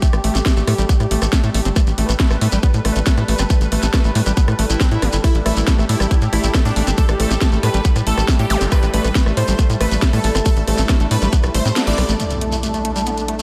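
Psychedelic and intense, this psychedelic trance excerpt drives forward at 138 BPM in a straight 4/4, cut from a longer piece and set in a dreamy mix soaked in hall reverb. An up-front, overdriven electronic kick anchors the drop alongside a garage drum kit with a cracking snare, hi-hat and rim click, while a close, grainy shekere adds acoustic texture. Beneath them a tight, punchy sequencer bass drives low with plucked sawtooth and square tones, and an overdriven acid bass riff squelches with resonant filter sweeps and diffuse delay. A pulsing gated texture holds sustained chords in the background, joined at 0.4 s by an ethereal, airy pad with phaser and ensemble chorus, both breathing with sidechain pumping. A detuned supersaw stab carries the melody from 5.2 s, a very quiet formant-sweep wobble bass briefly adds a second line, and electronic sub drops, zaps and impacts punctuate the track. 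The kick drops out at 11.8 s on a band accent, and an impact takes over from 12.2 s into a new section.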